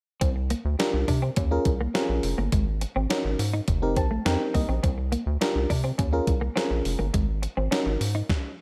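A clean electric guitar riff with an ensemble chorus, a rubbery, hollow square-wave bass and a crisp 8-bit drum machine with a thumpy kick and fat snare kick off together at 0.2 seconds in this danceable, feel-good early-eighties boogie funk cut, moving at 104 BPM in a straight 4/4. A mellow FM electric piano joins at 0.8 seconds with accompaniment and plays a fill at 3.7 seconds, while the harmony circles through suspended ninth chords from C9sus4 to Eb9sus4, Ab9sus4 and F9sus4. The bouncy bass and drums sit up front, the drums carrying a tape-warm, large-room character, and a light reverb rounds out the mix.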